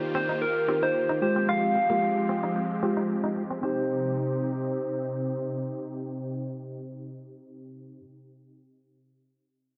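Pop in C minor at 112 BPM in a straight 4/4, this short excerpt from a longer piece feels bittersweet yet energetic. Up front, a soft struck FM synth lead carries the melody with a round, keys-like tone, a fast attack and a vintage warble of vibrato, colored by chorus, a low-pass filter and tape echo. Beneath it, a mellow tine electric piano plays the accompaniment with a clean sound heard through built-in speakers, while a lush supersaw pad holds sustained chords, its detuned sawtooth unison given a slow attack, long release and phaser. A bright, twangy clean electric guitar, recorded direct and compressed, picks a riff in the background with lush chorus from 0.1 to 3.8 seconds. A filter sweep runs through the opening passage as the harmony moves from Ebadd9 to Fmadd9, then the music settles on Cm at 3.6 seconds, all set in light reverb and digital ambience.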